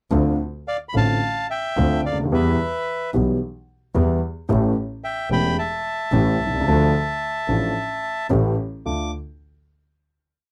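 A milonga rhythm, played with a loose rubato feel, drives this short, complete tango piece, its mood sultry and passionate. The grand piano, warm and natural, sits up front with the accompaniment, while a single bowed double bass carries the bass line in the same milonga pattern, its tone nasal and earthy with a light vibrato. At 0.7 s the bandoneon enters with the melody, reedy and dark with an airy edge, building motif-based sentence phrases that are partly doubled in thirds. The harmony moves through Dm7, Em and A7 before settling on a closing D minor chord at 8.9 s. The sound is dry and close, with little reverb, in the manner of a 1970s studio recording.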